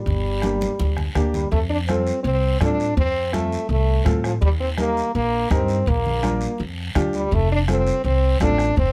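A solo French horn opens this danceable, passionate cumbia, playing a classical-style melody with light vibrato and a roomy tone, and the pizzicato upright bass, soft-beater bombo and congas enter almost at once, with a drum fill from 0.6 to 1.5 seconds. The woody, thumpy bass sits up front beside the horn, while the hard-handed congas stay in the background and a raspy, saturated guiro adds texture. A boxy upright piano with short sustain fills in the accompaniment over chords moving from Gm through F, Eb and Bb, all captured with close, detailed microphones and little reverb in this brief cut from a longer piece.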